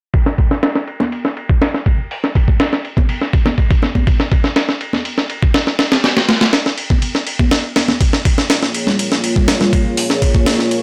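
Breakbeat at 122 BPM in Bb minor, raw and swaggering, built on a gritty, pitched-up sampler-style drum kit that sits up front with a thumpy kick, high-tuned snare, hi-hat and ride, all run through low-pass filtering and a filter sweep across the whole passage. Bright, thin-skinned congas play in the background from 1.0 to 9.7 seconds, and at 8.5 seconds a deep, moody analog pad of detuned sawtooth and sub octave tones slowly fades in on a Bbm7 chord, carrying chorus, 12-bit sampler grit and sidechain pumping. Light reverb frames this short cut from a longer piece.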